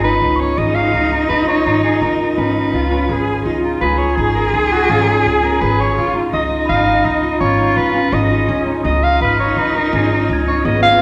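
In a straight, uneven 7/4 pulse, this hopeful, shimmering chamber piece opens on a Db9 chord, with a breathy soprano saxophone carrying an intimate, vibrato-laden melody with scooped notes while a rich, bowed cello sings a second line with portamento. A bright Celtic harp rings out fingerpicked arpeggios over a woody, thumpy pizzicato upright bass, and a mellow glockenspiel played with rubber mallets adds soft bell-like touches in the background from 0.0 to 1.7 seconds and again from 6.7 seconds. The ensemble is heard from further back in a reverberant recital hall, in a short section cut from a longer piece.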